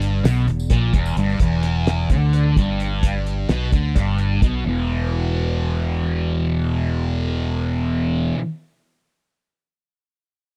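Moving in a straight 7/8 at 259 BPM counted in eighths, this hypnotic, kaleidoscopic psychedelic rock fragment pairs an up-front, double-tracked fuzz guitar riff, thick and picked under phaser, with a round fingered electric bass and a dry, dark, cloth-damped drum kit of fat snare and tight kick that drops out at 4.5 seconds, while a jingly tambourine sits in the background from 0.3 to 1.4 seconds, the whole heard as a close 1970s-style studio recording in a small room.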